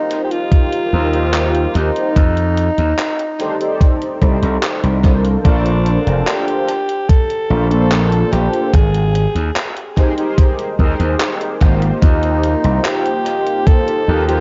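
A raspy, close-miked alto saxophone melody opens over dark, detuned synth brass with chorus and tape echo, joined by gated 80s drum-machine handclaps and hi-hat, a thumpy, up-front electronic kick and, from 0.9 s, an overdriven, punchy slap bass in this faded, woozy 73 BPM vaporwave piece in Bb major, whose chords move from Eb6 through F13, Bbmaj9 and Abmaj9 in an echo-heavy cassette-tape mix that tops out at 7.6 kHz, cut from a longer piece.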